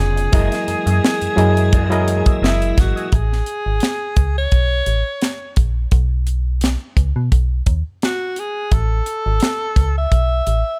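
Lush 1970s-style soul at 86 BPM in 4/4, with a lightly swung sixteenth-note feel and a smooth mood, cut from a longer piece. A bright alto saxophone carries the melody up front with a pop-style vibrato. Beneath it sit a tight funk drum kit with a high-tuned snare and tight kick, dry and close, and a dark, digital FM bass with a metallic edge, a fast attack and a decaying tone. In the opening passage, a reedy, barky electric piano adds gritty, overdriven accompaniment through a combo amp. A piping tonewheel organ holds clean, scooped chords in the background with chorus vibrato and a slow rotary speaker, and a slightly broken-up electric guitar plays a picked, lo-fi riff through a small old amp with wah and spring reverb. These three parts stop at 3.1 seconds as the harmony moves from F#13 to Amaj7, and the saxophone, bass and drums carry on through a brief chordless stretch before settling on A, with the saxophone sounding until 10.8 seconds amid a studio ambience.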